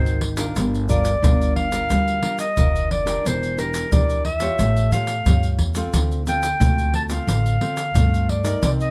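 This short excerpt from a longer piece has a close, detailed sound with light reverb, placing a joyful, lively blend of samba and choro at 89 BPM in a straight 4/4. A warm clarinet carries the melody in a classical solo style, sitting up front yet sounding distant and roomy through its plate reverb, moving between Bb4 and A5. A fingerpicked nylon-string guitar supplies classical-style accompaniment from D3 to D5, while a pizzicato upright bass with gut strings gives a woody, dark, thumpy low end reaching down to E1. Tube shaker, pandeiro and a tight surdo enter at 0.1 seconds, played with hard hands in a small-room sound and placed up front. The harmony moves from Ab9 through Gm7, Em7b5 and A7b13 before settling on Dm7 at 5.9 seconds.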